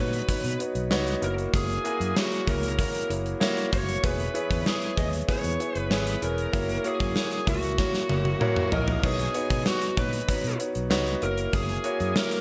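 Uplifting and romantic, this 1980s-style pop excerpt at 96 BPM in F# mixolydian pairs a dark, distorted, bluesy overdriven lead guitar melody with an intimate concert grand piano whose action noise is audible, a round fingered electric bass and an up-front gated 80s drum kit with punchy kick and bright cymbals, all bathed in a moderate plate reverb and bright digital production, with a drum fill from 7.8 to 9.0 seconds as the chords move through Badd9, F#7 and E6.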